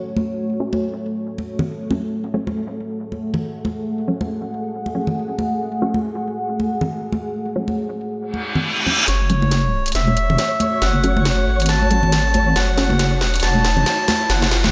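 Deep dubstep in a brooding, meditative half-time swing, opening on a dark, detuned pad with chorus, close dry congas struck with hard hands and a muted, phased dub chord stab sitting in the background, until a reverse cymbal and riser at 8.4 seconds leads at 9.1 seconds into a build-up where a reedy, nasal melodica, an up-front saturated wobble bass and a garage kit with cracking snare and bright hats join, followed shortly after by a grainy, flickering texture, all soaked in a dreamy hall reverb.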